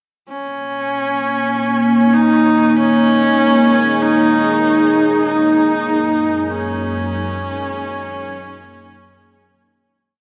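Vast and ominous, this brief ambient piece drifts in free time within an enormous, echoing space. A clear, husky horsehead fiddle enters at 0.3 seconds, bowing an earthy free melody with light vibrato and portamento, up front yet distant under shimmer reverb and diffuse delay. From 1.3 seconds a deep, moody pad of detuned sawtooth and sine voices with a sub octave shifts slowly between Bbm7 and Gbadd9 and fades out by 10.2 seconds.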